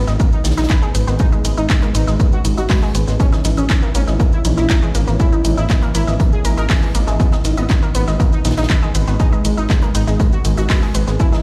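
Heard as if played through a big sound system in a bare room with a large studio reverb, this driving, cinematic melodic techno excerpt at 120 BPM in G# minor puts a punchy, tape-warm electronic kick and a deep, rumbling detuned saw bass up front, while a fat, brassy analog synth brass carries the melody with chorus and tape echo, a round, nasal wave-folded analog pluck runs arpeggios through delay, a very quiet, warbling vintage pad holds moody sustained chords, an analog drum machine adds handclaps, hi-hat and shaker, and a tight, mid-forward acoustic kit contributes filtered hi-hat and snare in the background, with the bass, pluck and brass pumping to the kick over a move from G#m to A#dim/G# at 3.2 seconds and back at 7.2 seconds.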